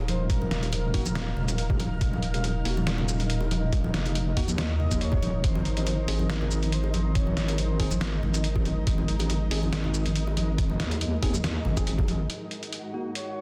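A heavy, saturated wobble bass sits up front in this cavernous, brooding deep dubstep excerpt with a half-time, lightly swung feel, carried over a gritty, pitched-down sampler-style kit of thumpy kick, hi-hat, shaker and medium-tuned snare, with distant acoustic congas and bongos echoing in the background. A cloudy, evolving granular pad and a flickering, grainy texture blur together beneath clean tine electric piano stabs that arrive at 0.9 seconds and ring through dub echo. A soft, breathy flute-like lead with tremolo, vibrato and lush chorus drifts in briefly, returning from 4.8 to 8.2 seconds, while the bass drops away at 12.3 seconds as the harmony settles on Ebm.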